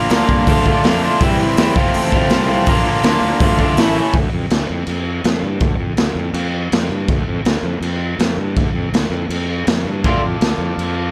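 A double-tracked, overdriven electric guitar riff leads this raw, menacing garage rock excerpt for its first 4.1 seconds, over a growly fuzz bass and a gritty small-room drum kit with a boomy kick, while a buzzy vintage combo organ holds very quiet chords with light vibrato; guitar and organ then drop away, leaving bass and drums to drive on under light reverb until both return at 10.0 seconds.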